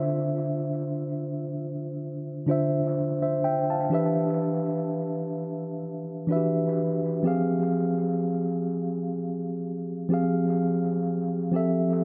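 A mellow tine electric piano carries this short R&B excerpt entirely on its own, playing from 0.0 to 12.0 seconds across a span from D3 to A5. The mood is romantic and smooth, set at a slow 63 BPM in 4/4 with a light swing on the sixteenths. The piano's tone is clean and direct, sitting up front in the mix, with an analog delay trailing its notes. The chords move from Dm9 to Em7 at 3.9 seconds, then to Fmadd9 at 7.2 seconds, before settling on Fmaj9 at 11.5 seconds. A moderate spring reverb and an echo-heavy mix give the room a soft, lingering halo around the keys.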